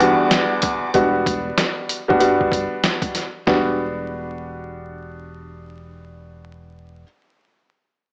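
Tough and reflective, this boom-bap hip-hop excerpt in E minor moves at 95 BPM with a swung 16th-note feel, opening on an Em9 chord under vinyl crackle, a small-speaker tone and light studio reverb. A dark, woody, up-front upright piano carries the accompaniment throughout, over a round, deep fingered electric bass, while a compressed, pitched-down sampler-style drum kit with a thumpy kick and muffled character plays until 3.7 seconds. Lush bowed symphonic strings with vibrato and portamento sound very quietly only in the first 0.9 seconds.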